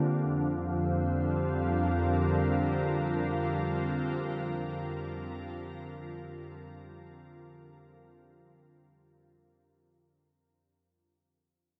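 A soft, organ-like pad opens the clip with a sustained Gm7/F chord at 0.2 s, its pure, detuned sine tone set bright and up front, with an ensemble chorus and its own reverb. This spacious, hazy ambient fragment drifts in free time, tuned to A4 = 438 Hz, and fades out across its full 10.4 seconds. A cathedral reverb with a 5.1-second decay soaks the whole mix in a dreamy wash.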